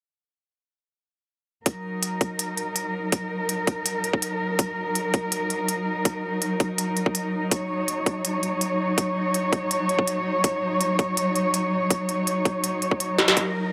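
Cinematic and heavy, this half-time drum and bass excerpt at 164 BPM in Eb minor sits on a brooding Ebm chord as a dark, woody studio cello section holds lush bowed chords with vibrato, roughened by vintage 12-bit sampler grit and sidechain pumping from 1.7 to 13.7 seconds. A tight, layered electronic kick with a high-pass filter drives alongside an industrial kit of clanging snare and crisp hi-hats re-recorded in a large room, the drums up front until a fill at 13.2 seconds. The dry, gritty hardware sound carries only light reverb.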